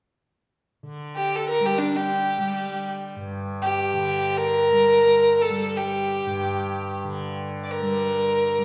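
A softly plucked tanpura opens this meditative fragment of Indian classical music at 0.8 seconds, its buzzing, shimmering drone sitting low and quiet beneath everything that follows. At 1.2 seconds a single bowed violin enters up front and carries the melody, its rich tone laced with vibrato. The violin line is smooth and even, unfolding in free time within a middle register that suits its introspective mood. The tanpura's acoustic, warm resonance stays well beneath the violin in level, giving the melody a steady, humming ground. Both instruments are wrapped in a wet recital hall reverb and heard from further back in the room, lending the passage a spacious, contemplative air until it breaks off at 8.6 seconds.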